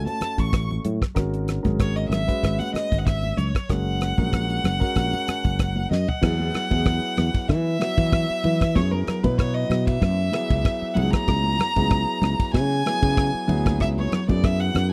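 A clear, bowed solo violin with focused vibrato and a slapback echo carries the soaring melody of this slick electric jazz fusion excerpt, set over a dark, mellow baby grand piano and a round, up-front fretless bass. A damped 70s drum kit with a fat snare and tight kick gives the groove a light swing, while very quiet, high-tuned congas ring underneath. Near 5.0 seconds the piano plays a fill, joined by a short drum fill at 5.9 seconds before the music moves into a new section at 6.2 seconds, all in a close 1970s-style studio sound with little reverb.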